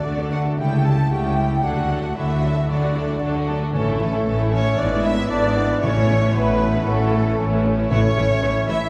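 Classical orchestral music, spirited and cheerful at 115 BPM in D major, where a warm violin section carries the melody over a focused second violin line, airy flutes and a dark clarinet, while clear violas, a bassoon, soft French horn chords, mellow ringing harp arpeggios and rich cellos and double basses fill out the texture, hard-mallet timpani enter at 3.7 seconds, and the whole is heard from far back in a reverberant concert hall with vinyl crackle.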